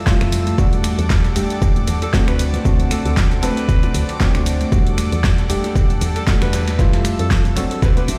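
Deep house at 116 BPM in E minor, smooth and late-night, this 8.2-second excerpt rides a punchy, up-front electronic kick and a fat-snared drum kit with finger snaps, hi-hat and shaker, backed by a very quiet, gritty sampler-style kit with ride cymbal, very quiet close bongos and congas, and a round, woody FM bass saturated with tube warmth and pumping against the kick. Hollow, organ-like stabs with chorus and delay punctuate a Fmaj9, Em11 and D7 progression, while a detuned sawtooth pad with tremolo and a breathy, slow-swelling pad sit bright in the background, both pumping with the kick. At 2.0 seconds a clear, close-miked alto saxophone enters with a soft-attack solo line touched by digital delay, all set in a large studio reverb.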